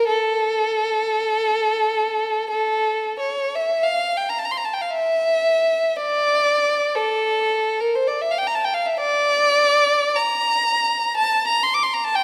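A single bowed violin, close and up front with a soft attack, singing vibrato and sliding portamento, carries this lonely, mournful classical fragment in a free, rubato 3/4, ranging from A4 to D6 and moving into a new section at 3.9 seconds before breaking off at 12.2 seconds, framed by a moderate concert hall reverb.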